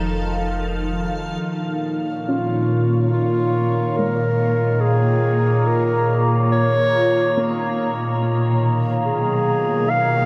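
Reflective and spacious, this slow 71 BPM ambient fragment, cut from a longer piece, sets an up-front mellow clarinet melody with tape echo over a bright, morphing wavetable pad treated with ensemble chorus and phaser, a resonant drone of moving overtones, and a deep sub bass that drops out at 1.4 s as a filter sweep begins on the pad and the harmony moves from F7 to Bb minor, before very quiet, soft round pluck arpeggios arrive at 2.3 s and an airy, breathy wind-like tuned noise texture drifts in behind at 3.7 s, all bathed in a huge, wet reverb that settles onto a closing Bmaj7.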